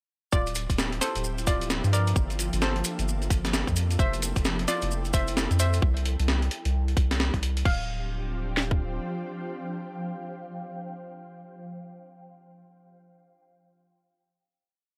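This two-step UK garage piece sits in D minor at 131 BPM with a shuffling 16th-note swing, its mood soulful and moody across chords that move from Dm11 through Gm9 and Fmaj9 before resolving on a closing Dm7. A tight, overdriven garage kit with a cracking snare drives the two-step kick pattern up front, layered with a gritty, compressed sampler-style breakbeat kit whose high-tuned snare, skipping swung hats and crash add grain, while hand-played maracas shake mellow sixteenths close and dry until 5.8 seconds. Underneath, a deep, round dub sub bass plays a dotted rhythm with sidechain pumping, dropping out at 9.0 seconds. A hollow, bouncy square-wave pluck carries the repeating riff melody in thirds and sixths, treated with chorus and tape echo. Two ethereal, airy pads fill the background with sustained chords and slowly shifting texture, one vintage and warbling, the other full-bodied with a phaser, both washed in ensemble chorus and reverb and pumping with sidechain compression. 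The final chord arrives at 7.7 seconds, and once the drums fall away shortly after, the pads and pluck ring on through it in an otherwise dry, close mix.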